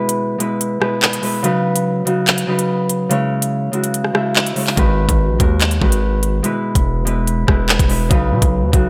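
A mellow, fingerpicked Celtic harp opens this menacing drill cut, its ringing tones sitting up front under a low-pass filter and moving through E, Badd9 and C#m, while an electronic drum kit with a knocking kick, crisp hi-hats, handclaps and rim clicks arrives at 0.1 seconds in a half-time feel at 144 BPM. At 4.8 seconds a heavy, saturated 808-style bass enters with a fast attack and decaying sine tone layered with noise, its aggressive distortion darkening the harp's turn to G#m7. Light reverb and digital ambience give the ominous fragment a slightly spacious sheen.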